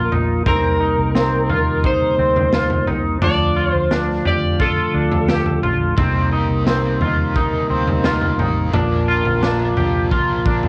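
Recorded at home on cassette, this dream pop fragment sits in a moderate, short-decay room that gives it a hazy, homespun closeness, and its mood is haunting and melancholic. A dark, slightly broken-up electric slide guitar, played with fingerpicks, carries the melody through cassette tape saturation, analog delay and plate reverb, and it stops at 5.6 seconds. Beneath it, a mellow, flute-like tonewheel organ holds sustained chords with audible key click and a slow rotary speaker, while a clean, twangy electric guitar sits up front with chorus-tinged, delayed arpeggios. A round, foam-muted fingered bass stays in the background, and a raw garage drum kit of kick, snare and toms has a pumping small-room sound, gritty and saturated with a rolled-off top. At 6.0 seconds, a double-tracked, overdriven electric guitar enters lower in the mix, its picked, compressed accompaniment shimmering with tremolo and subtle chorus as the harmony moves from Cm7 to Bb.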